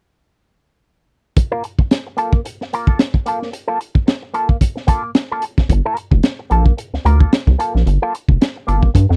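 Crunchy, gritty breakbeat drums with a high-tuned snare and tight kick drive this sly funk cut from 1.4 seconds, beneath a clean, compressed electric guitar with an envelope filter over a rootless Gm9 chord, until a rubbery, hollow square-wave bass joins up front at 5.7 seconds, in a dry, close 1970s-style studio sound.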